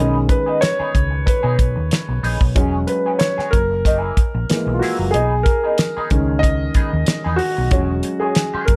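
A lightly swung 93 BPM groove in 4/4 carries this romantic, smooth slice of lush 1970s-style soul in B major, where a dark, mellow grand piano sits up front and solos from 0.0 seconds over B6, E69 and F#9 chords, a round, amped hollow-body fingered bass holds the low end, a bright, twangy electric guitar through a small old amp plays a slightly broken-up, compressed riff coloured by wah and chorus, and a damped, dry 70s kit with a fat snare and tight kick enters at 0.3 seconds, the band heard in a light studio reverb.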